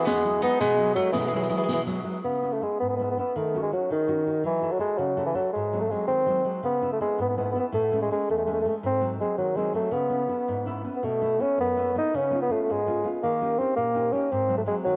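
A mellow bassoon with light vibrato and a smooth top sings a passionate, wistful Italian folk serenade up front in C# minor at 110 BPM in 6/8, softened by cassette tape and analog delay, while a fingerpicked, full-bodied nylon-string guitar with audible finger squeak carries the chords throughout, a round, double-strung picked mandolin adds a second line only until 1.8 seconds, and a distant riq with dark jingles plays until 2.0 seconds, all set in a lush hall reverb on a home cassette recording cut from a longer piece.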